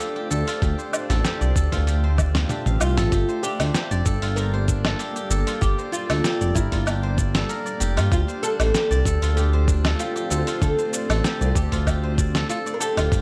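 Mystical and meditative, this excerpt of organic downtempo moves at 96 BPM in a straight 4/4, set in G dorian and tuned slightly below standard pitch. A bright, blurred granular cloud pad holds sustained chords in the background, its built-in reverb and sidechain pumping giving it a breathing quality, while a silvery, fingerpicked steel-string zither rings out arpeggios through tape echo. A gritty, overdriven sampler-style drum kit with a fat snare, hi-hat, shaker, toms and woodblock sits alongside a thumpy electronic kick, both carrying studio reverb, and a smooth, mellow gliding synth bass with tube saturation sits up front with portamento. A very quiet frame drum, played with soft hands, appears briefly early on, and a filter sweep colours the opening before a drum fill leads into the chord change from Dm7 to Gm at 3.1 seconds. From 2.5 seconds a woody, plectrum-plucked fretless oud carries the melody, its double strings roughened by 12-bit sampler grit and tape echo, as the harmony later returns to Dm7. 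The overall mix is dry, with little room reverb.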